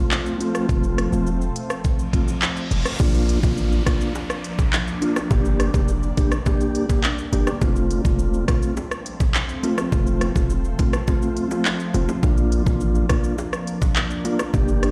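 Dancehall at 104 BPM with a sunny, summery mood, this excerpt sets a soft, flute-like tonewheel organ through a fast rotary speaker and an ethereal, detuned pad over F, Bb and Gm chords, while an overdriven electronic drum kit with a knocking kick, crisp hats, handclaps, rim clicks and shaker drives alongside a punchy, heavy 808-style bass entering at 0.7 seconds, a reverse cymbal rises into the shift at 3.0 seconds where tight, high-tuned bongos join in the background, and the organ and pad pump with sidechain compression in a bare, reverberant room.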